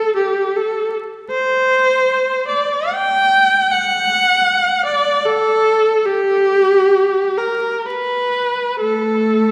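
Set in a reverberant concert hall and heard from further back in the room, with vinyl crackle over the sound, this lonely, yearning classical fragment is cut from a longer piece. A single bowed viola plays alone for its full 9.5 seconds, its rich tone shaded with vibrato and portamento as it moves freely in a rubato 3/4 between A3 and G5. The playing feels deeply expressive and distant.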